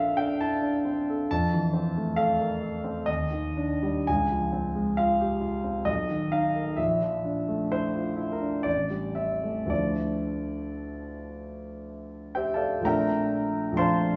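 A clear grand piano carries this short impressionist solo, its tone present, polished and placed up front across a span from A1 to C6. The mood is nocturnal and wistful, moving in a slow, rubato 3/4 at roughly 54 to 69 BPM, with tuning set to A4 = 435 Hz. Lush seventh and ninth chords drift through unexpected shifts, opening on Bbmaj9, sliding through Fmaj7, Ebmaj7, C#maj7 and Bmaj7, then settling toward Am7 and Dmadd9 before Bbmaj9 returns at 12.8 seconds to begin a brief new section. The sound sits in a wet recital hall reverb with a small room ambience around it. Cut from a longer piece, the recording lasts about 14.2 seconds, ending just as that second section gets underway.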